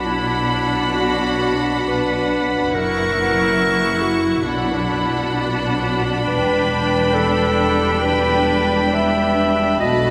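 Classical: a slow, yearning and solemn romantic orchestral movement with a freely breathing rubato feel, cut from a longer piece. A chamber violin section carries the high melody with light vibrato and a soft, intimate sul tasto touch, while a second violin line, a smooth solo clarinet, and a rich, distant viola accompaniment weave beneath it. A tight French horn section holds sustained chords in the background, and expressive cellos with portamento and soft-edged double basses anchor the bass, all bathed in the long, wet reverb of a cathedral-like hall.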